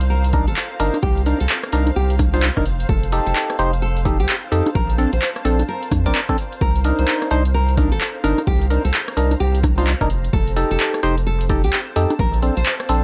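A deep, thick saturated sub bass sits up front in this late-night, moody slice of two-step UK garage, its fast attack and tube saturation giving each sustained note real weight. The groove runs at 129 BPM in 4/4 with a 62% swing on the sixteenths, driven by a punchy, overdriven analog drum machine of congas, handclaps, hi-hat and rim click, joined at 0.3 seconds by a punchy electronic kick, both re-recorded in a large room. Also arriving at 0.3 seconds, a hollow, organ-like stab with a wave-folded noise layer decays through chorus, phaser, cassette-tape colour and delay. A fingerpicked nylon-string guitar carries the melody in a full-bodied classical tone with delay, while a cloudy, blurred granular pad drifts in the background with its own reverb and sidechain pumping. In C dorian, the harmony cycles through Cm7, F7 and Bbmaj7 in a dry mix that is cut from a longer piece.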